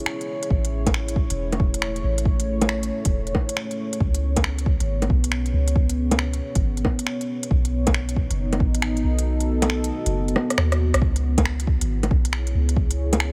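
A swung 4/4 groove at 137 BPM drives this wistful, ghostly future garage piece in C# minor, where a dark, detuned analog pad sustains chords through chorus and sidechain pumping, a crisp, up-front organic electronic kit of bongos, finger snaps, hi-hat and rim click sits in studio reverb, a soft, round 808-style bass pumps below, and a deep, layered electronic kick drops out at 9.3 seconds before a drum fill at 10.4 seconds and a return to C#m7 at 11.0 seconds.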